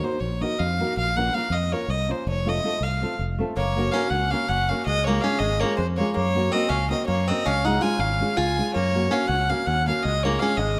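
Balkan folk in the manner of a wedding band, this restless, fiery clip runs at 324 BPM counted in eighths, in a straight 7/8. A single violin carries the melody up front, its bowed tone rich and biting with a light vibrato, an airy, nasal edge and an earthy, boxy body. Beneath it, a classical nylon-string guitar supplies thumb-plucked accompaniment with fresh strings, while a fingered electric bass, dark, round and punchy, enters at 0.2 seconds and sits prominently in the mix. At 3.6 seconds the harmony moves from the opening Ebm, Bbm and F chords into a brighter passage alternating Gb and Db, and a metal-body resonator slide guitar joins with a second line, its fingerpicked tone bright, metallic and nasal. A moderate concert hall reverb gives the ensemble a spacious, resonant setting, and the recording is cut from a longer piece.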